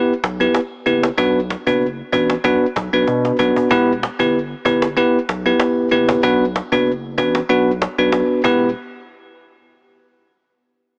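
A bright, bell-like electric piano opens this smooth, mellow afrobeats excerpt in E minor at 95 BPM, its clean, up-front chords moving between Em and Bm over a lightly swung sixteenth-note feel. A deep, thick, saturated sub bass with a fast attack and long sustain arrives almost at once, along with a woody cajon played with soft hands and faint snares, which adds a short fill at 3.1 seconds before its kick drops out late in the passage. Light reverb and studio ambience give it a small-speaker character, and the parts stop at about 8.7 seconds, as the piece is cut from a longer work.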